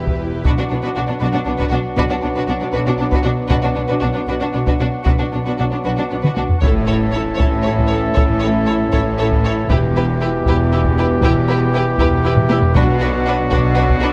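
Cinematic, epic orchestral film score in B minor, moving at 78 BPM in a straight 6/8 with a heroic sense of purpose, cut from a longer piece. A lush violin section carries the melody with expressive vibrato and a soft attack, supported by a second, focused violin line and a smooth, even viola accompaniment sitting in the background. Beneath them, a clear double bass section and a rich cello section hold down the bass. Very quiet French horns and vintage-toned trombones sustain mellow chords, joined by a hollow stopped-flute pipe organ with baroque voicing and a touch of chiff. A close, dry taiko ensemble played with heavy sticks drives the piece as the loudest part, with a drum fill leading into the second section at 6.6 seconds. There the harmony moves from B minor through A and E minor, a solo trumpet adds stabs, a huge, bright impact sounds, and articulate hard-mallet timpani strike at 12.7 seconds, all set in light reverb with close, detailed microphones.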